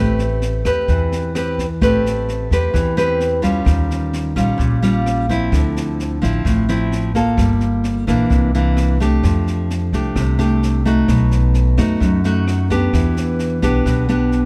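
A full-bodied, fingerpicked nylon-string guitar sits up front with audible finger squeak in this melancholic, smooth bossa nova excerpt, moving from Am9 through rich extended chords to Em7 over a woody pizzicato upright bass and a brushed jazz kit with a boomy kick, high-tuned snare and rim clicks that sounds small-roomed and natural, all captured close and dry.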